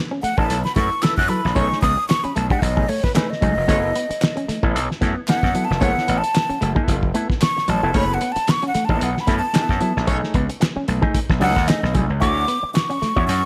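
A small room's light reverb frames this hypnotic, sly funk excerpt, where a breathy, mellow concert flute sits up front and solos through the first 12.2 seconds over muffled, cloth-damped drums with a fat snare and a gritty, overdriven slap bass with a punchy attack. Two fingered electric guitars fill out the groove, one dark and clean through an envelope filter, the other twangy and just breaking up on a low riff. In the background, crisp group handclaps enter at 1.0 seconds, and a tight horn section with light vibrato adds a second line from 1.6 to 10.2 seconds, before the harmony shifts to a new section near the end.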